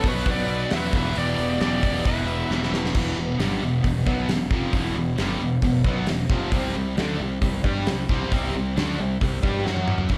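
Hard rock in E minor at 134 BPM, this aggressive, driving clip is cut from a longer piece and heard as a live gig through the venue's PA, with a club reverb around it. A high-gain lead guitar carries the melody over a nasal second line from a dark, overdriven guitar with a parked wah that sits in the background; the lead has tape echo, the wah guitar has slapback echo, and both stop at 2.7 s. Underneath, three picked rhythm guitars drive the riff throughout: a biting overdriven one set back with phaser and slapback echo, a scooped, bright high-gain one with distortion and slapback echo, and a very quiet, double-tracked, compressed distorted one. A growly, punchy fuzz-fingered electric bass with overdrive anchors the low end. The gated 80s drum kit sits up front, with a fat snare, punchy kick and bright cymbals in a bright, gated stone room, and it plays fills at the close of each section. 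The harmony moves from Bm to Em, with a shift to a new section at 2.9 s, and later lands on C5 and then F#5.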